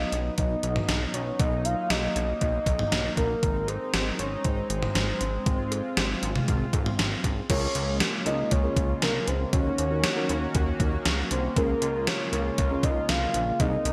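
This upbeat, bright synth-pop piece opens on a soft, octave-layered synth lead with a full, round tone, carrying the melody over a shimmering, detuned pulse-width pad and a glossy, evolving synth bass, both treated with chorus. Moments later, at 0.1 s, a gated 1980s digital drum machine arrives up front with a thumpy kick, an overdriven gated-reverb snare, hi-hat, toms, crash cymbal and cowbell, driving a straight 4/4 at 118 BPM. The lead is coloured by chorus, tremolo and delay, and the opening chords move from Cb to Ab. At 7.5 s the music settles into Db major, and a mellow FM electric piano enters in the background, sitting dark and round under the lead as the harmony moves through Db6, Ebm7 and back to Db6. A lush hall reverb and bright 1980s-style digital production frame this excerpt, which is tuned slightly flat to A4 = 437 Hz and cut from a longer piece.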